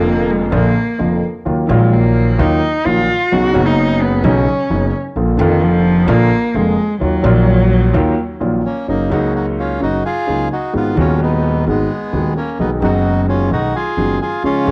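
A bowed cello leads this elegant, passionate tango fragment, singing an expressive solo with vibrato, soft attacks and portamento in Eb minor until 8.4 seconds, over a smooth, vintage-toned concert grand piano with deep bass and a woody pizzicato upright bass. At 8.7 seconds a dark, reedy bandoneon enters up front with the melody, and the music turns to F# major at 8.9 seconds, moving at a rubato 129 BPM in 4/4. The cello, piano and bandoneon carry a cassette-tape coloring, and light reverb and a small-room ambience give the whole a warm, homemade intimacy.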